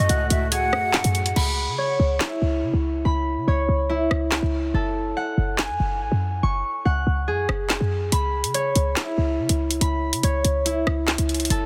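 A breathy, hollow silver flute with vibrato and tape echo and a smooth, detuned sawtooth analog pad with chorus open this cold, dark half-time drill fragment before both drop out at 1.3 seconds, while bright, ringing harp arpeggios with tape echo, a punchy, tight sine 808 bass with a noise layer, and an up-front electronic drill kit of woody snare, rim click, hi-hat, handclaps and crash carry on through a break from 1.4 to 8.1 seconds in a dense, heavily limited mix with light reverb.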